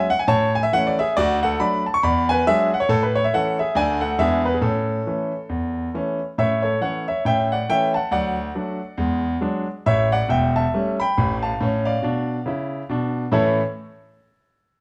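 A moderate stone-room reverb surrounds this live, single-room recording, while the solo piano stays up front with a vintage character. It's an exuberant, swinging stride jazz passage in 4/4 with a 60% swing on the eighth notes, cut from a longer piece. The concert grand is the only instrument, playing from the start until 13.6 seconds and ranging from a deep bass at E1 up to C#6. Its tone is clear and smooth across that span. The harmony cycles through A, D and E9 before turning to A7 and a Dm/A colour at 11.6 seconds, then settling back on A as a new section begins at 13.3 seconds.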